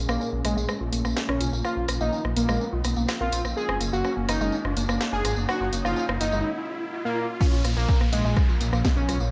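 A punchy, tape-warm electronic kick lands up front at 7.4 seconds for the drop of this driving, cinematic melodic techno cut at 125 BPM in Bb minor, where a menacing detuned saw bass, a fat nasal analog lead with delay, a woody wave-folded pluck arpeggio with dub echo, a deep moody pad, a layered house kit with a cracking snare, a jingly tambourine and a background riser and downlifter build through a filter-swept rise over Bbm and Gb chords in a concert hall reverb.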